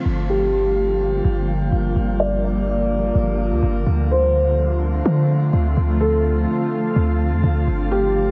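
A half-time 4/4 hip hop groove at 126 BPM sets a spacious, hazy mood in G minor, with a boomy 808-style bass holding the low end from 0.1 seconds, under a shimmering, ethereal ambient pad whose granular, chorused chords drift from Gm7 to Dm7 at 3.9 seconds. A felt-muted upright piano enters at 0.3 seconds with an intimate, mellow melody, softened by a low-pass filter and trailed by delay. A filter sweep runs through this short cut from a longer piece, and the whole mix carries the heavily compressed, radio-like sound of light reverb and multiband compression.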